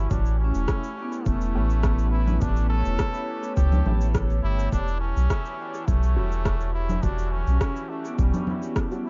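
Hazy and meditative, this short ambient dub passage moves at 104 BPM in E dorian with a light swing, its dark, warm digital ambience shading every part. A trombone with a straight mute carries the melody in a nasal, brilliant tone, its phrases trailing into dub echo. Beneath it, a warbling, lo-fi pad holds nostalgic sustained chords through chorus and its own reverb, moving from A7 to Em69 at 4.7 seconds. A deep, round sub bass sits up front alongside a punchy layered electronic kick, while a tape-toned kit of shaker, rim click and congas adds echoing texture. A metallic vibraphone with soft mallets and medium motor vibrato rings out arpeggios in the background from 0.4 seconds, and a very quiet, muted chord stab with a filter pluck and detuned chorus slips in at 1.6 seconds.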